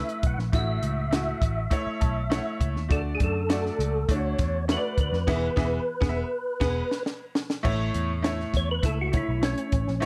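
A dark, lightly reverberant production frames this short, danceable cut of uptempo 1960s-style soul at 101 BPM in A major, moving through A, D and E chords. A mellow, percussive tonewheel organ carries the melody through chorus vibrato, a fast rotary speaker and tape echo, over a brilliant, woody, slightly detuned upright piano, a round, foam-muted picked electric bass and a dry, punchy cocktail drum kit with a high-tuned snare sitting up front. The piano slips in a fill at 1.7 seconds, and the band plays accents with a drum fill leading to 7.7 seconds, where the organ takes a solo.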